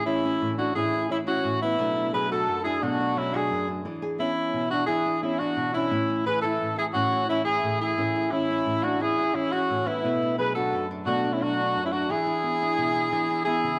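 Sunny and warm, this highlife passage moves at 116 BPM in a straight 12/8, with a punchy horn section carrying the melody up front in a pop style, its ensemble sound touched by light vibrato. Beneath it, a small, fingerpicked nylon-string guitar supplies acoustic accompaniment over a progression that circles from A through Bm7 and E7 to Amaj7. Both parts play throughout the 13.8 seconds, set in a moderate echo-chamber reverb with a small-room ambience, as a fragment cut from a longer piece.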